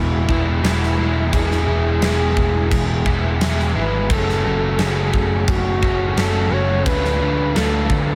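A mellow, present duduk sings a folk-style melody with vibrato and delay over a crunchy, double-tracked overdriven guitar riff with analog chorus, a dark, round, amped electric bass and an arena drum kit with a punchy kick and bright cymbals that enters at 0.3 s, moving from E through F#m to Dm6 at 87 BPM in a hazy, wistful shoegaze and dream pop rock excerpt soaked in huge ambient reverb.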